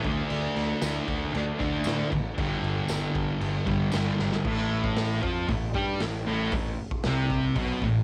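A thick, double-tracked fuzz guitar riff, up front and bright with cassette-tape grit, opens this gritty, menacing garage rock excerpt at 116 BPM alongside a round, overdriven picked bass and a raw, saturated drum kit with a punchy kick and pumping stone-room ambience, while a jingly tambourine sits in the background from 0.8 to 4.0 seconds, and a drum fill at 4.2 seconds leads into a second section settling in A minor at 4.4 seconds, all in a light-reverb home cassette recording.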